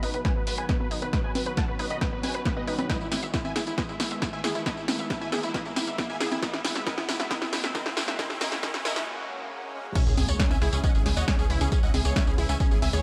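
A straight 4/4 pulse at 136 BPM drives this soaring, euphoric uplifting trance passage in C# minor, cut from a longer piece, where a punchy, up-front analog drum machine with congas, crash, hi-hat, snare and tambourine fills through a build-up as an up-front electronic kick enters at 0.2 s and a tight, wave-folded sequencer bass pumps in the background. A huge, detuned supersaw carries the melody through cassette-tape grit, sidechain pumping, a low-pass filter and delay, while a lush, bright unison pluck with analog chorus spins arpeggios under a filter sweep across B, Emaj7 and F#add9. After a brief break and swell from 9.1 s, the drop lands on C#m7 at 10.0 s with an impact, a very quiet riser, swell and sub drop adding effects in a light reverb.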